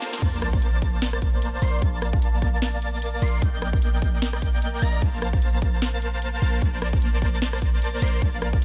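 A half-time groove with a light swing on the sixteenths drives this lush, euphoric future bass passage, cut from a longer piece. It opens on a brief break where a very quiet riser, reverse cymbal and sub drop sit under a drum fill. The drop lands at 0.2 seconds with an impact, bringing in a punchy, layered electronic kick placed up front and a deep, boomy 808-style bass with a sine body and noise layer that pumps against the sidechain. Huge, detuned sawtooth supersaw chords carry the riff through a phaser and digital delay, moving from Bbmaj7 through Bbmaj9, Ebmaj7/Bb and Fadd11/Bb before returning. A trap kit adds a sharp, softly clipped snare, bright hats, rim clicks and crash in a small room, while an airy, mellow lead plays high arpeggios in the background with chorus, vibrato and portamento. The master is dense and heavily limited, with little reverb.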